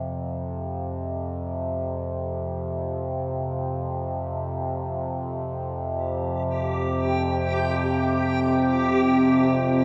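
A nasal, resonant synth drone with moving overtones sits up front in this unsettling, desolate dark ambient fragment, fading in from 0.0 seconds over an Fsus2 chord in free time, with chorus on it. A bright, reversed texture with a granular, dreamy quality enters at 6.6 seconds, and a deep, moody pad of detuned sawtooth voices with a sub octave joins with sustained chords at 7.0 seconds. Everything sits in a huge, wet reverb with a cassette tape character, cut from a longer piece.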